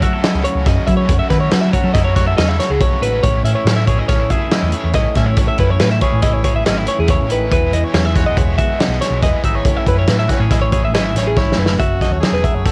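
Playful and bright, this math rock and midwest emo excerpt moves at 140 BPM in a straight 5/4 in A lydian, its home cassette recording dry, with an up-front, gritty drum kit, a round hollow-body bass, a clean twangy guitar, and a compressed twelve-string playing arpeggios over chords moving from F#m7 through Amaj7 and Emaj9. A cranked stack guitar sits in the background with an overdriven, double-tracked riff under harmonic tremolo until 11.8 seconds. A drum fill at 11.4 seconds coincides with the entry of a brilliant solo trumpet, scooping into notes with vibrato as the harmony lands on F#m9.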